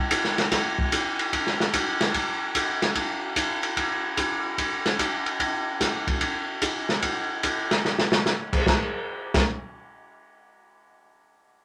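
An up-front acoustic jazz drum kit swings moodily at 147 BPM in 4/4, its dark cymbals, medium-tuned snare, boomy kick and rolled-off top set in a wet small-room reverb, with a short fill at 7.8 seconds before the kit stops at 9.4 seconds in this cut from a longer piece.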